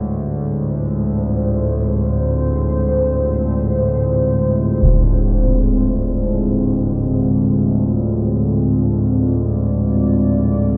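Soaked in a cavernous cathedral reverb, this dark ambient drone fragment sets a deep, moody pad of detuned sawtooth unison and sine sub octave with chorus, holding sustained chords over an evolving analog drone of pulse-width-modulated sawtooth and pulse waves, both up front from the start, while a brief, low-pass-filtered acoustic concert bass drum sounds at 4.8 s.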